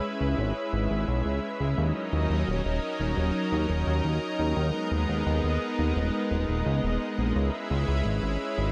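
Synthwave in G# minor at 86 BPM, this short cut from a longer piece has a driving, nocturnal mood over a straight 4/4 pulse. A lush unison pad carries sustained chords from the start, its detuned sawtooth and square-wave layers sounding bright and full-bodied, with a slow attack, long release and chorus, and it sits up front. A fat analog bass enters at 0.2 seconds, thick and detuned with a sawtooth edge, a fast attack and a filter sweep, holding sustained notes low beneath the pad. The harmony moves from C#m7 to D#m7, then G#madd9/D#, before returning to C#m7 at 7.4 seconds. Light reverb gives the whole a digital ambience.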